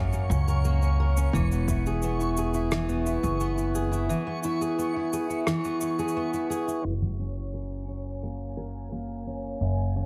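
Up front, a full-bodied jumbo steel-string acoustic guitar is fingerpicked in arpeggios, its tone darkened by a low-pass filter and trailed by a digital delay, in this delicate, hopeful folktronica excerpt. Beside it, a woody, dark upright bass is plucked pizzicato, anchoring the harmony as it moves from F# to E and back to F#. High above, a reversed, granular texture swells in with a soft attack, dreamy and detuned, bright and bathed in its own reverb. A soft brush kit adds cabasa, rim clicks and filtered toms until about 7.2 seconds, while an overdriven electronic kick sounds briefly in the background near 1.3 seconds. From 6.9 seconds a filter sweep on the guitar opens the second section, all set in a muted small-room ambience.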